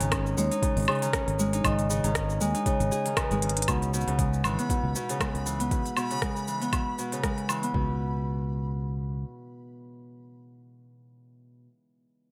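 A lightly swung sixteenth-note groove in 4/4 drives this wistful, autumnal folktronica excerpt, built from crisp hi-hat, rim click, shaker and woodblock on an organic electronic kit that sits up front with a tape-warm character, under a soft electronic kick. A fingered electric bass, dark, round and punchy, holds the low end close to the listener, while a bright, ringing Celtic harp plays fingerpicked arpeggios through a digital delay. A metallic vibraphone with medium mallets and the motor off adds a second line, roughened by vintage 12-bit sampler grit and echoed by its own delay, until it drops out at 3.7 seconds after a short drum fill. From 4.6 seconds a reversed, granular texture swells dreamily in the background, sustained with a soft attack and its own reverb. The harmony moves from a suspended chord into a minor seventh and then back to a suspended voicing, and once the bass stops at 9.2 seconds the harp carries on alone in a light, digital ambience.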